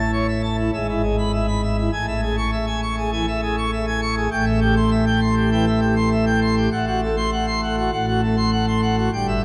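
A pipe organ on full plenum with bright mixtures fills this brief classical toccata fragment, its brilliant, Romantic voicing sitting up front and spanning G1 to C#6. The mood is majestic and stormy in a straight 4/4 pulse, with harmonies moving from A through Amaj7 at 1.9 seconds to a darker Am7 at 4.3 seconds. A long, wet cathedral reverb with a 4.4-second decay surrounds the organ, and the passage breaks off at 9.4 seconds as a cut from a longer piece.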